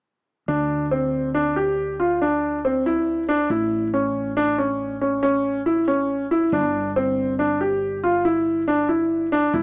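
Set in an uneven 7/4 at 139 BPM with a straight feel, this short progressive instrumental excerpt in D minor carries a tense, brooding mood from 0.5 to 9.6 seconds. A clear baby grand piano plays arpeggios in a narrow middle register, its natural tone sitting up front with short sustain. Beneath it, a mellow fretless electric bass holds the low end, its round, punchy sound dark and direct, mixed well below the piano. The harmony moves from D7(no3) to A at 3.5 seconds and then to G5 at 6.5 seconds. Light reverb and small room ambience frame the two instruments, and the overall sound has the boxy character of a small speaker.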